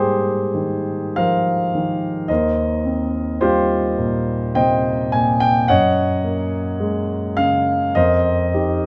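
A concert grand piano opens on an Abmaj9 chord and plays alone for the whole 8.9-second fragment, which is cut from a longer impressionist classical piece. The mood is hazy and dreamy, with a slow, rubato pulse around 45-55 BPM in 3/4 and a tonal center of Eb mixolydian. The harmony drifts through Eb69 and Gb69 before arriving on F9sus4 at 8.0 seconds. The piano's sound is warm and open, with deep bass, long sustain and a close, up-front presence that reveals fine detail across its span from Eb2 to Ab5. A moderate recital-hall reverb of about 1.4 seconds gives the chords a soft halo of space.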